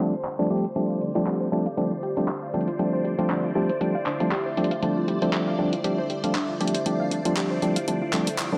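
Deep house with a warm, relaxed mood, heard in a short cut from a longer piece with a gently swung groove. A hollow, percussive organ stab sits up front, its dark, fast-decaying hits colored by chorus and digital delay. Beneath it, a deep, moody pad holds sustained chords in the background, while a shimmering vintage string machine adds a high violin texture with ensemble chorus, all resting on a single F6/9 chord. A tape-warm, layered electronic drum kit carries handclaps and hi-hat with low-pass filtering, and a warbling, dusty lo-fi pluck joins at 0.8 s with dark arpeggios behind the other parts. Filter sweeps run across the drums, the stab and the pad for the whole passage, and a lush hall reverb with a soft low-pass tilt wraps the mix in a hazy digital ambience.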